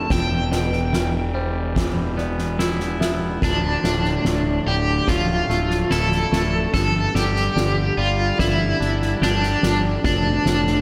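A straight 4/4 pulse at 72 BPM, carried by a soft-mallet drum kit with a boomy kick, fat snare and crash cymbal, drives this cinematic, brooding post-rock excerpt in D dorian. A fuzzy, growly fingered bass sits up front beside a cranked, overdriven stack guitar whose melody rides tremolo, slapback echo and digital delay. Beneath them, a twangy, clean picked guitar arpeggiates, a felt-muted upright piano adds intimate arpeggios with audible action noise until 3.4 s, and a very quiet, glassy FM pad sustains chords through Em7, Dmadd9 and Gsus2, all bathed in a lush hall reverb for a big arena sound.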